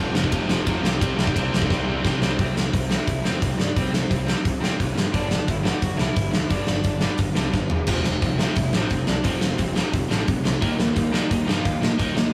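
Rowdy and upbeat, this punk rock excerpt charges along in a straight 4/4 with a punchy, up-front acoustic drum kit and a fuzzy, overdriven picked bass beneath a tight distorted guitar riff, joined by a crunchy rhythm guitar that drops out between 2.4 and 7.9 seconds while a biting lead guitar carries the melody from 2.4 seconds, set in a rough, saturated rehearsal-room sound with small-room ambience.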